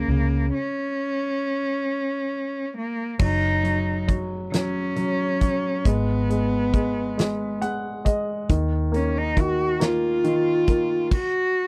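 A single bowed cello carries the melody up front with a warm, focused tone, vibrato and a smooth top, in this tender, heartfelt six-eight pop ballad in F# major at 45 BPM, cut from a longer piece. A polished, present baby grand piano and a dark, round, foam-muted electric bass fall into a stop at 0.5 s, before a natural country drum kit with a fat snare and punchy kick enters at 3.2 s, and the piano adds a fill at 7.2 s. The dry, close 1970s-style studio sound carries light reverb.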